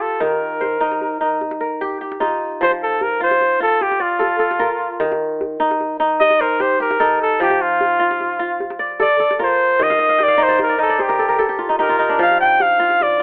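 A clear, up-front flugelhorn with pop-style vibrato carries the melody in this joyful, flowing excerpt of West African string and xylophone music, taking a solo from 2.6 seconds while a ringing, fingerpicked kora spins crisp arpeggios over chords moving between Eb and F in F mixolydian. Set in a straight 12/8 at 100 BPM, a tight, cracking djembe sits close and dry in the background, adding a fill at 11.6 seconds as the kora adds its own fill from 9.9 seconds. Light reverb and a telephone-like sound color the whole recording.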